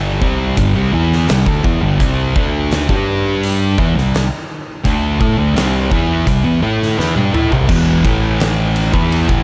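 A pair of thick fuzz guitars opens on a slow, ominous stoner and doom metal riff at 84 BPM, one dark and set in the background, the other distorted and up front, underpinned by a growling, overdriven fingered bass. An oversized, low-tuned acoustic drum kit joins at 0.2 seconds with a punchy kick, fat snare and dark cymbals in a bright stone room that pumps, while power chords cycle hypnotically between G5 and C5 under light reverb. A drum fill at 7.0 seconds leads into a new section at 7.7 seconds, where the riff shifts to E5 and A5 before this excerpt from a longer piece cuts off.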